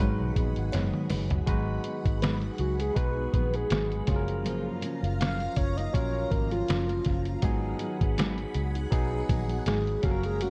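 Indie bedroom pop at 81 BPM in G# dorian, wistful and mellow and cut from a longer piece: a round, octave-layered synth lead carries the melody and takes a soft solo from 1.5 s over a barky, lightly overdriven tine electric piano, a thumb-plucked nylon-string guitar in the background, a swirling phased string machine holding sustained chords, and a foam-muted fingered electric bass up front, while a muffled, pitched-down sampler-style drum kit enters at 0.4 s with a fill before the solo and a woody kalimba adds a brief second line at 0.7 s, the mix sitting in light reverb and digital ambience with a dark, warm production.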